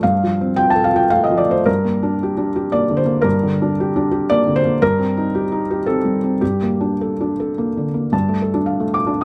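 A felt-muted upright piano plays alone, soft and intimate with audible action noise and short sustain, in this reflective, wistful neoclassical minimalist excerpt in G minor, a rubato 3/4 at around 103-117 BPM that spans G2 to D6 and moves through F/G, Gm, Cm/G and Gmadd9 before turning to Dm/G at 8.1 seconds, all captured up front by close, detailed microphones with little reverb.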